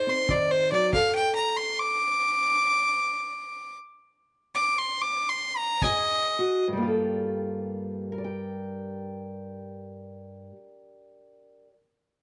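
A biting, close fiddle takes a brooding solo over fingerpicked, boxy parlour guitar in this smoky acoustic country blues excerpt in G minor, swung in 4/4 at roughly 69-94 BPM, with a tight, rolled-off kick drum played with brushes touching in briefly. The tempo slows through the fiddle solo as the band falls into a stop from 0.9 to 5.8 seconds. The fiddle's airy bow ends at 6.6 seconds, leaving the dark guitar to carry on alone in a small room with light reverb until 11.7 seconds.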